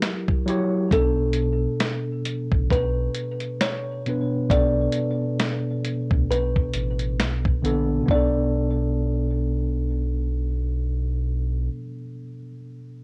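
Reflective and hazy, this lo-fi hip hop fragment, cut from a longer piece, drifts along at 67 BPM in 4/4 with a swung sixteenth-note feel, set in B minor and moving from F#7b9 to Bm7. A woody, hollow kalimba carries the short, thumb-plucked melody through a low-pass filter, tape echo and plate reverb, while a worn, slightly out-of-tune tine electric piano sits up front in accompaniment, dulled by its own cassette treatment and low-pass filter. A gritty, compressed sampler-style drum kit with a thumpy kick, medium-tuned snare, hi-hat and finger snaps carries a small-room character until it stops at 8.3 seconds. A round, deep analog bass joins at 0.9 seconds, blending sawtooth and sine tones with a fast attack and dark transformer saturation. The whole recording sits in a moderate studio reverb and carries the warble and pitch drift of old cassette tape, with the electric piano playing last until 13.0 seconds.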